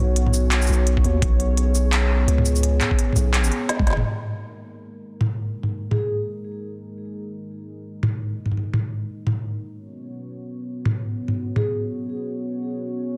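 Heavy and dark, this half-time drum and bass excerpt at 170 BPM in G# minor rests on a deep, detuned analog pad with chorus and sidechain pumping that holds sustained chords throughout, while a long, sine-toned 808-style bass and a gritty, pitched-down electronic kick anchor the opening until a drum fill at 3.7 seconds, the overdriven organic electronic kit with its woody snare, crisp hats, shaker, handclaps and toms sits up front with a swung feel, and brief, ringing vibraphone notes with soft mallets and delay appear at 5.9 and 11.6 seconds in a dense, heavily limited master with light digital reverb.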